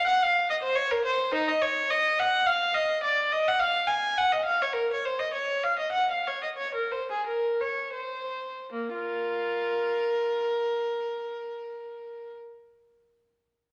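Introspective and solemn, this excerpt from a baroque-style suite movement in Bb minor unfolds in a rubato 3/4 at 74-108 BPM, as a single bowed violin with a dark, nasal, reedy gut-string tone in period style plays alone from 0.0 to 12.3 seconds, sounding up front yet distant in a wet recital hall reverb, ranging from Bb3 to Ab5 and slowing between 3.9 and 8.7 seconds before a new section begins.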